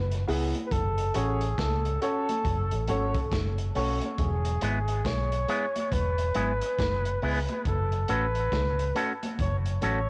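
A hazy, laid-back dub reggae groove sits at 69 BPM in 4/4, its sixteenths swung, with a crunchy, gritty breakbeat kit of tight kick, medium-tuned snare and hi-hat coming in at 0.1 seconds, joined at 0.6 seconds by bright, high-tuned congas that sit distant in the background with tape echo. A dark, foam-muted fingered electric bass holds the low end up front, round and punchy with transformer saturation, while a breathy flugelhorn carries the melody with vibrato and a soft, whispered attack through cassette tape and tape echo. A woody, mellow upright piano adds stabs through the opening break until 4.0 seconds, and from 4.6 seconds a twangy, picked electric guitar with an envelope filter takes up the accompaniment with echo. The harmony moves between E and F#m. The whole cut has the muffled, lo-fi character of a home cassette recording bathed in moderate spring reverb, and it is taken from a longer piece.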